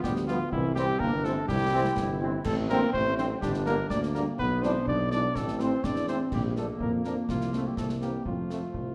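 A festive, proud military-style march for wind band in a straight 2/4 at 124 BPM, this excerpt is cut from a longer piece and sets a mellow, smooth-topped cornet melody up front over a close-miked tuba bass, with euphonium and a tight woodwind section carrying second lines in the background. A clear trombone section holds sustained chords and a very quiet, dark French horn section adds accompaniment from 0.3 to 8.6 seconds, while concert snare drum, bass drum and dark-toned clash cymbals keep the march beneath. The harmony moves from G7 and C through minor and dominant chords to close on F, all bathed in a reverberant recital-hall sound.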